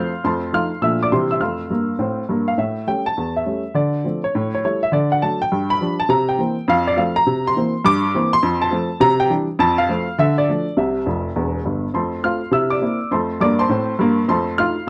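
A brisk, swung eighth-note pulse in common time drives this exuberant, playful stride piano number, cut from a longer piece. A lone upright piano carries the whole performance from 0.0 to 14.9 seconds, ranging from the deep bass at E1 up to F6. Its tone is woody and slightly detuned, with a short sustain that keeps each chord crisp. The harmony moves briskly through dominant sevenths such as A7, G7 and C7 before returning home to F, and the piano slips in a quick fill at 11.1 seconds as the opening theme comes back. Close, detailed microphones place the instrument present and up front, framed by only a light touch of reverb.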